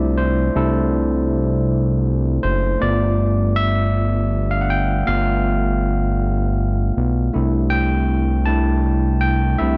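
Sensual and tender, this slow R&B fragment moves in six-eight with a straight feel, cut from a longer piece. An overdriven tine electric piano carries the accompaniment and takes a solo across the full 9.8 seconds. Its tone is bright and barky, gritty from being pushed through a combo amp, and it sits up front. Beneath it, a fat analog bass built from detuned sawtooth waves holds thick, sustained notes with a fast attack and a filter sweep, also placed up front. The harmony moves from C6 to G9 at 2.8 seconds and back to C6 at 7.3 seconds, tuned slightly low to A4 = 438 Hz. A moderate plate reverb with a 2.5-second tail soaks the whole mix in a dreamy haze.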